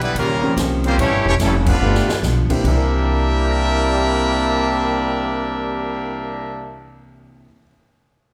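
Up-front, bright trumpets carry the melody over a trombone section with light vibrato and soft attack, a woody, thumpy pizzicato upright bass, a punchy-kicked swinging drum kit and a very quiet, full-bodied picked jumbo acoustic guitar, with an intimate grand piano joining in the background at 0.4 s, its action noise audible, in this energetic big band swing cut from a longer piece at 144 BPM in C mixolydian, where a band accent at 1.6 s leads into a drum fill at 1.8 s, all bathed in the wet reverb of a recital hall.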